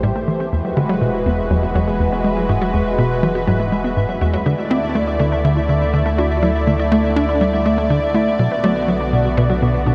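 Cosmic and expansive, this ambient space-music excerpt is built on a bright, thick unison pad with chorus holding sustained chords up front, while a detuned, wave-folded unison pluck plays arpeggios through analog delay in the background. A tight, punchy sequencer bass drives a sawtooth riff with analog delay and a filter sweep throughout, underpinned by a deep, round sine sub bass. A pulsing, tempo-synced gated texture with chorus and its own reverb sits softly behind, all bathed in a huge ambient reverb over chords moving from Am7 to Eadd9, Dsus2 and Bm.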